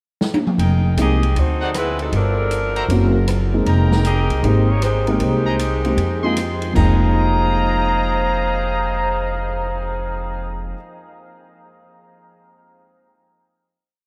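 A woody, dark upright bass sits up front in this sultry, swinging big band piece in F minor at 156 BPM, playing a two-feel under a bright saxophone section that carries a tight, motif-based melody in four-part block voicing. After a drum fill from 0.2 seconds, the open kit with its dark cymbals and boomy kick rides along, while a bright trumpet section punches syncopated stabs in drop2 voicings and an intimate grand piano comps with rootless voicings and audible action noise. Chords such as Fm11, D7b9 and Gb7#11 pass by before a final chord at 6.8 seconds rings out in a vast, echoing cathedral-like space.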